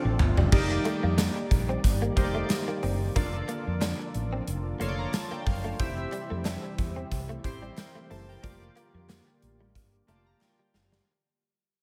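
A drum fill and band accent open this uplifting, romantic 1980s-style pop piece at 91 BPM with a light 16th-note swing, where a chorused shimmering pad, round detuned analog keys and a clean, direct-recorded electric guitar riff with ensemble chorus and analog delay sit over a growly fretless bass and a punchy gated drum kit with bright cymbals and tambourine. A funky, chorused polysynth adds plucky stabs from 0.5 s, faint crisp handclaps join at 0.9 s, and the keys play fills over an F pedal that moves through Ebmaj7, Bbmaj7, C and Gm7 chords. The dreamy, hall-soaked mix fades out from 0.5 s onward across the passage, which is cut from a longer piece and closes on another drum fill.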